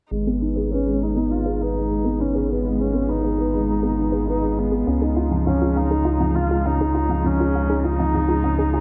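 A small, echoing room with a soft low-pass haze frames this intimate, cinematic electronica excerpt in G# dorian, moving at 101 BPM in a straight 4/4 from G#m to C#add9 at 4.9 seconds. A felt-muted upright piano plays a mellow riff under a filter sweep, a deep analog bass sits up front, and a distant string quartet holds rich, bowed chords in the background. A warbling, detuned pluck adds chorused, delayed arpeggios from 0.3 seconds, and a clear, intense viola carries the melody from 0.7 seconds.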